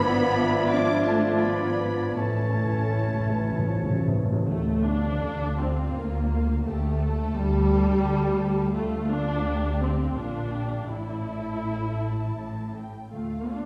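A wet scoring-stage reverb places this elegiac, solemn orchestral passage in D minor at a distance, as if heard from further back in the room. The passage is cut from a longer classical piece and moves in a rubato 3/4 at roughly 74-88 BPM. Two lush violin sections carry the melody and a second line in the background throughout, while an up-front viola section with focused vibrato supplies accompaniment, and woody double basses join a soft-attack cello section on the bass. For the opening seconds a clear oboe, a hollow, mellow flute, a very quiet clarinet and a dark bassoon add second lines and accompaniment. A dark, distant French horn section and a smooth trombone section hold sustained chords, and all of these winds and brass stop by 4.5 s. Round, soft-mallet timpani enter with a fill at 2.2 s, sounding close and dry against the reverberant strings, as the harmony moves from a diminished chord through suspended chords to settle on D minor.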